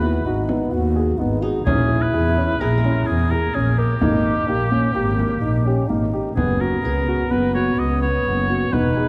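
Contemporary chamber music in an uneven 5/4 meter at 128 BPM, restless and pensive, this fragment of a longer piece sets a clear, lightly vibrato oboe melody above a warm French horn second line, with deep, dark grand piano arpeggios and an intimate, up-front bowed double bass played sul tasto with an airy tone. A very quiet frame drum, struck with soft hands, and a faint, bright-edged plucked qanun texture add color, the qanun dropping out at 8.2 s. The harmony moves from G#m7 through A#m7b5 and D#/G# before shifting to F#sus4 at 6.4 s, all set in a wet concert hall reverb with a dark overall production.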